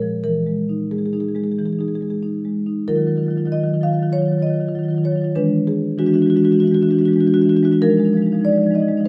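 A solo marimba played with medium mallets opens the recording, its rosewood bars giving a woody, warm tone that sits up front in the sound. This is a contemporary classical piece in Eb minor and 4/4, with a hypnotic, flowing mood and a rubato feel that lets the tempo drift between 89 and 99 BPM. The marimba ranges from Bb2 up to F5, moving through harmonies that begin on Emaj7, turn to Ebmadd9 at 2.9 seconds, and pass through E9 before settling on Fm7. A wet stone-room reverb with a 1.3-second decay surrounds the instrument, lending each struck note a lingering, resonant halo. The recording is a short passage cut from a longer work, with the marimba sounding throughout its 9.1 seconds.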